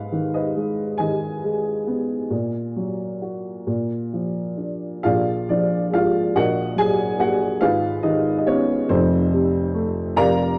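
A dark upright piano carries this short classical fragment alone, its woody, slightly detuned tone sitting up front with a boxy, mellow character. The mood is reflective and wistful, moving in a slow 6/8 at about 44-48 beats per minute counted in dotted quarters, with a rubato feel that lets the time breathe. Set in Eb minor, the harmony passes through Abm, Ebm over Bb and Bb in the opening passage, then shifts at 5.0 seconds to Bb7 and returns through Ebm over Bb and Abm before closing on F7. The piano spans a range from F1 up to Bb5, giving the writing a deep low register beneath its lyrical line. A moderate spring reverb and a dark production frame the instrument, and the recording is cut from a longer piece, stopping at 10.6 seconds.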